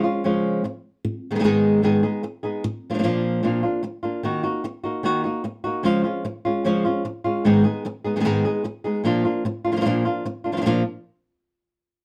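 A fingerpicked acoustic flamenco guitar plays alone and up front from the start until 10.8 s, its warm tone ranging from low Ab2 to Ab4 in this mournful yet fiery flamenco excerpt. The tempo is 150 BPM in a straight 4/4, with harmony moving through Db, Abm and Bb before the opening passage repeats from 4.2 s with Ebm added. A moderate studio ambience and a dark production surround the guitar in this fragment cut from a longer piece.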